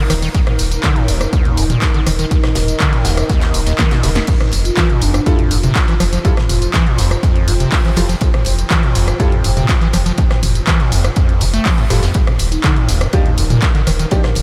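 Raw and trippy, this acid house excerpt rides a straight 122 BPM groove in F mixolydian, where a punchy analog drum machine with handclaps, tambourine, toms and rim clicks sits over an electronic kick re-recorded in a large room, a very quiet tight metal kit adds hi-hat and ride, and a drum fill lands at 3.8 seconds. A squelchy, resonant square-wave acid bass riff with overdrive and delay pumps against a deep, round analog bass and a warbling, lo-fi tape-like pad treated with chorus and phaser. Soft-mallet marimba phrases flicker briefly in the background at 4.7 and 12.5 seconds, while an intimate concert grand piano adds delayed stabs from 5.3 seconds as the chords move from Ebmaj7sus2 to Fmaj9 and then Ebmaj9, all under light reverb.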